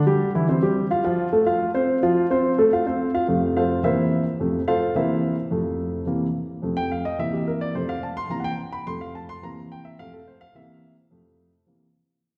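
A lone upright piano opens the recording at 0.1 s, its woody tone sitting up front in a church or concert hall with a long, wet reverb trailing behind each phrase. This is sunny, danceable solo jazz in F major, moving at a brisk 215 BPM in a straight 4/4 feel. After a brief opening phrase, a new section begins at 3.3 s, where the harmony settles into a steady back-and-forth between F and C7 that carries on to the end. The pianist covers a broad span of the keyboard, from deep bass notes up into the high treble, keeping the warm sound full and present against the hall's ambience. Cut from a longer piece, the recording fades out gradually from 3.3 s until it closes at about 12.2 s.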